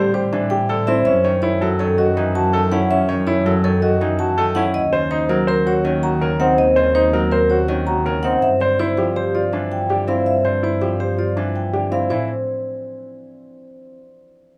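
All four parts begin together at the opening: a metallic, ringing vibraphone carrying the melody over a fingerpicked Celtic harp, clear piano arpeggios and a bowed double bass section. This is minimalist classical pattern music at 163 BPM in 5/4 with a straight feel, and its mood is at once urgent and meditative. The vibraphone, struck with medium mallets, shimmers with a slow motor vibrato, while the up-front harp adds an acoustic, warm glow beneath it. The polished, present piano keeps its notes short, and the rich, smooth bass section supplies an even foundation with light vibrato. The harmony moves from Am7 through F#m7 and D#m7 to G7sus4, reaching a rootless Am at 12.1 seconds. The vibraphone, piano and bass stop at 12.3 seconds, and the harp rings on alone until 14.0 seconds in a close, detailed, dry recording of a passage cut from a longer piece.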